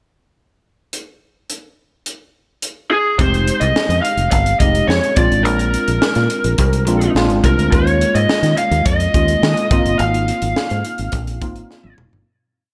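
Polished 1980s jazz-funk pop with a slick, urban mood, set at 106 BPM in a straight 4/4. A crisp fusion drum kit opens alone with a pickup bar at 0.9 seconds, playing a sixteenth-note studio groove with a high-tuned snare, punchy kick, hi-hat and toms, its gritty, saturated sound up front and bathed in gated reverb within a pumping small room. The lead guitar, overdriven through a small cranked amp, enters at 2.9 seconds with a picked, motif-based melody in song-like phrases, its lo-fi tone sitting prominently in the mix. From 3.2 seconds a fingered electric bass adds an agile, syncopated line with muted ghost notes, bright and growly, while a worn, slightly out-of-tune tine electric piano pushes rootless chords through overdrive and ensemble chorus. The verse moves through Fm7, Bb7, Eb7sus4 and Ab6 under light reverb and small room ambience, and the piece fades out as a drum fill closes it.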